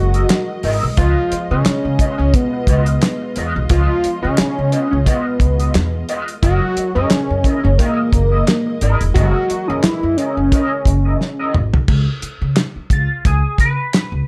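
A tight, cloth-damped drum kit with a fat snare, dark cymbals, handclaps and toms drives this gritty, energetic funk groove at 88 BPM with a light sixteenth-note swing, alongside a woody pizzicato upright bass up front. A fat, detuned analog lead with phaser carries the melody over Gb13 and Db9 harmony, while a sul tasto studio string section holds soft, bowed chords in the background and a clean, fingered electric guitar with wah and analog chorus adds accompaniment. During a drum fill, the lead drops out at 11.5 seconds, and the guitar takes a short solo from 11.9 seconds over a Db7 chord, all within a dark production with light reverb in this excerpt from a longer piece.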